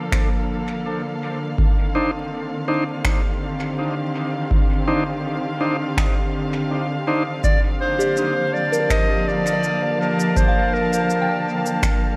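A deep, overdriven electronic kick sits up front in this spacious, hazy ambient dub excerpt at 82 BPM in C dorian, anchoring veiled, con sordino chamber strings and echoing electronic finger snaps and shaker, while a reedy tonewheel organ stabs through the middle before a bright solo clarinet melody enters at 7.4 seconds and a soft FM synth bell adds chorused, decaying arpeggios from 8.0 seconds, all set in an echo-heavy mix with chamber reverb and vinyl crackle.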